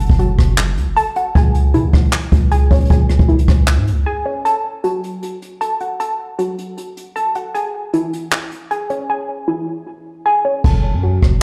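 A half-time trap groove on a smooth, dark brush kit with a boomy kick, rim clicks, handclaps and hi-hats drives this melancholic, menacing hip hop fragment, while a warbling, lo-fi, detuned pluck spins arpeggios through chorus, low-pass filter and delay, and a deep, sine-toned 808-style bass drops away at the break at 4.1 s before returning at 10.6 s as the hi-hats fall silent, all set in the big, bare-room sound of a large studio reverb.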